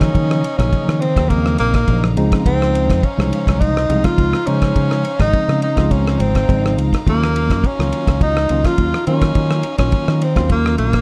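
A straight 4/4 groove at 104 BPM drives this nocturnal electric jazz fusion excerpt in Eb dorian, built on a damped 70s drum kit of tight kick, ride cymbal and rim click that sounds dry and rolled-off beneath a punchy, amped fingered electric bass. Up front, a breathy tenor saxophone carries the solo melody with whispered, scooped notes, a soft attack and vibrato, while a clean tine electric piano and a dark chamber string section bowing sul tasto sit in the background. The harmony moves from Ebm9 to Dbmaj9 at 2.2 seconds and returns to Ebm9 at 7.1 seconds, within a warm, lightly reverberant production.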